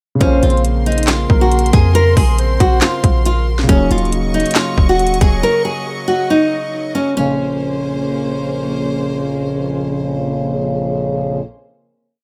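Hip hop trap with a hard-hitting, eerie mood, built on a half-time beat of hard-clipped kick, sharp snare layered with clap and metallic hats with fast rolls over deep, boomy 808 sub-bass, while a bright fingerpicked nylon-string guitar loops the melody above dark, sustained baby grand piano chords, smooth bowed chamber strings, a round, detuned synth counter-melody with chorus and tape echo, and mellow brass stabs that carry the final chord from 7.2 seconds to the end once the drums drop out at 5.3 seconds.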